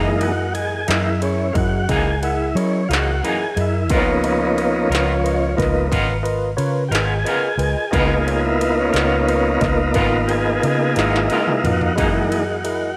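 A slow, laid-back 12/8 blues at 60 BPM in Db mixolydian carries a soulful, unhurried mood through this short passage from a longer piece, moving from Gb13 to Db13 and back to Gb13 at 12.0 seconds. A smooth tonewheel organ takes the solo up front through a slow rotary speaker, over a round, punchy, foam-muted fingered bass and a barky tine electric piano with analog chorus. A twangy, slightly broken-up picked guitar with tremolo adds color, while an electronic drum kit with a heavy kick and clanging snare plays a fill from 11.0 to 12.0 seconds, all set in a moderate echo chamber reverb.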